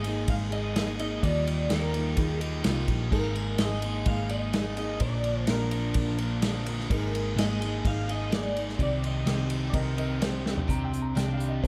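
A dark, warm production in a small, lightly reverberant room frames this wistful, dusty folk-rock and heartland-rock fragment, where a twangy, slightly broken-up electric guitar through a small old amp carries the melody with analog chorus and delay until 10.4 s. A full-bodied, picked jumbo acoustic guitar and a double-tracked, overdriven electric guitar riff sit beneath it, while a round hollow-body short-scale bass and an up-front acoustic drum kit played with bundle sticks and a punchy kick anchor the groove. The drums throw in a fill at 10.4 s, and a woody, slightly detuned upright piano with audible action noise slips in at 9.7 s as a brilliant second line.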